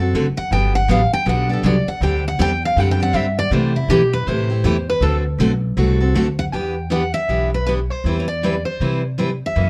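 A bright, full-bodied dreadnought guitar carries the melody, picked up front in the mix and entering at 0.4 s to take a solo that runs until 6.5 s. This bittersweet, swinging piece of acoustic string swing in the jazz manouche style rolls along with a lilting swung feel, cut from a longer performance. Beneath the lead, a second picked steel-string guitar, a jumbo with fresh strings, lays down the accompaniment with a warm, full-bodied tone and audible finger squeak. An upright bass with gut strings supplies a woody, thumpy pizzicato foundation, also set close and present. The harmony moves through seventh chords before shifting into a new section at 6.5 s on a minor seventh, all wrapped in light reverb and a dark, warm production.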